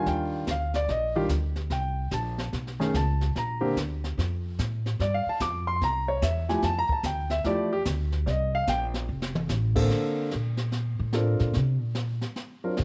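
Opening at 0.0 s with a smooth, vintage-toned grand piano carrying the melody through a slapback echo beside a woody, thumpy pizzicato upright bass on gut strings, this playful, swinging jazz piano trio excerpt in F major at 146 BPM soon adds a brushed kit with dark cymbals, a high-tuned snare and a boomy kick at 0.1 s, and the piano solos over rich chords such as Ebmaj9 and Fmaj9 until a short drum fill leads into an upright bass solo at 9.9 s, the whole trio sitting in a small, natural-sounding room.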